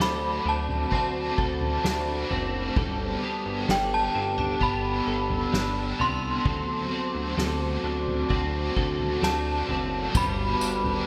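Dream pop at 65 BPM in G major, blissful and floating, where a chiming, inharmonic FM synth chime carries the melody alongside a warbly, lo-fi tape-like pad, arpeggios from a compressed clean electric guitar, an overdriven electric guitar with tremolo, a glossy, nasal chorused synth bass, and a soft-mallet drum kit with dark cymbals and gated reverb, all steeped in a lush hall reverb and bright 1980s-style digital production as D7 and Gadd9 alternate through this short excerpt cut from a longer piece.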